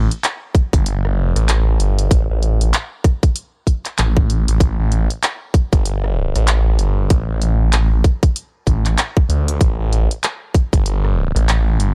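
A swung 96 BPM glitch hop groove in 4/4 drives this gritty, funky cut from a longer piece, as a tight, up-front electronic kick from 0.5 s sits with a layered kit of handclaps, hi-hat and rim click in small room ambience, alongside a thick, swirling, saturated detuned saw bass with phaser and overdrive, all captured in a dry, gritty hardware sound.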